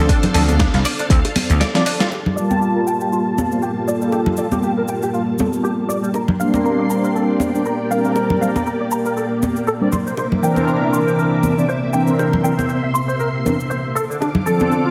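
Groovy and cosmic, this nu-disco excerpt in G dorian moves at 119 BPM in 4/4 with a gentle 16th-note swing, cut from a longer piece. A punchy, up-front slap bass, layered electronic kick and gritty, overdriven sampler-style hi-hat and snare drive only the opening moments. A filter sweep colours the start, and a drum fill from 1.6 to 2.1 s leads into a long passage built on Gm9, C9 and a return to Dm7. Throughout, a dark, detuned sawtooth synth brass with chorus, vibrato and delay carries the accompaniment up front, while a lush string machine with sub octave and ensemble chorus holds slow-attack chords under a filter sweep of its own. A twangy, clean electric guitar recorded direct picks a low-pass-filtered riff, and ringing bongos, cabasa and congas played with hard hands keep the percussion going almost to the end. The brass and strings share a sidechain pumping, and the whole mix sits in a moderate digital room reverb with a heavily compressed, radio-like sound.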